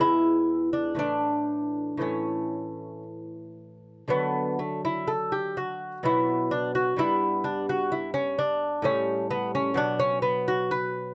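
This is a classical, baroque-style dance for solo lute, a brief cut from a longer piece with a flowing, dance-like character. The music moves in triple time, though the player shapes it with a free, rubato pulse rather than a strict beat. The fingerpicked lute has a warm, delicate voice, with paired gut strings, some doubled at the octave, across a range from E2 up to B4. One phrase gives way to a restatement at 4.1 s, where the harmony moves toward a new tonal centre before settling on an A7 and a closing B5. Close, detailed microphones place the instrument up front, with a touch of reverb lending it a soft sense of space.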